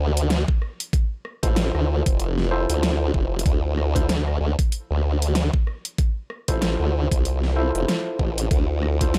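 A 95 BPM groove in 4/4 with a 58% swing on the sixteenths drives this funky, playful glitch hop excerpt in D minor, resting on a single Dm7 chord and tuned to A4 = 441 Hz. A formant-sweep wobble bass opens at 0.0 seconds, its detuned sawtooth and sine layers wobbling through a formant filter, up front and sustained with chorus and tube saturation as it moves between F1 and D2. The dubstep drum kit arrives at 0.2 seconds with a huge snare, bright hi-hats and rim clicks, overdriven and re-recorded in a small room, while an overdriven, knocking electronic kick sits up front from 0.5 seconds. At 1.4 seconds a worn, slightly out-of-tune tine electric piano adds stabs between E4 and C5, heard as if through built-in speakers, with 12-bit sampler grit, sidechain pumping and analog delay. The excerpt has a dry, gritty hardware-recorded character set in a digital ambience.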